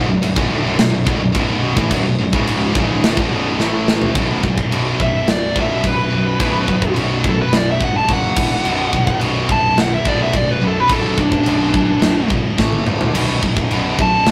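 Heavy and dark, this heavy metal passage in B minor drives along at 107 BPM in a straight 4/4, cut from a longer piece. Three high-gain, distorted guitars churn out the riff in the background, one of them double-tracked with a scooped tone, while a growly, fuzz-laden picked bass sits beneath them. A tight metal drum kit sits up front from 0.2 seconds, with bright cymbals, a medium-tuned snare and a tight kick, and drum fills arrive at 3.6 and 12.6 seconds. At 5.0 seconds a dark, smooth overdriven lead guitar steps forward with a solo over chords that move from B5 through F#5 and E5 and back. The rough rehearsal-room sound carries light reverb and a touch of tube saturation.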